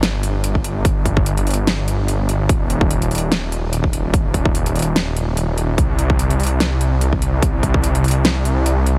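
A swung, half-time future bass groove in 4/4 sets a bright, playful mood, with a thick, lush, detuned sawtooth bass pumping under its chorus alongside a big-room dance kit of huge snare and crisp hats, while a punchy, tape-warm electronic kick sits up front from 0.6 to 7.8 seconds, all captured dry with a heavily compressed, radio-ready sheen in this brief cut from a longer piece.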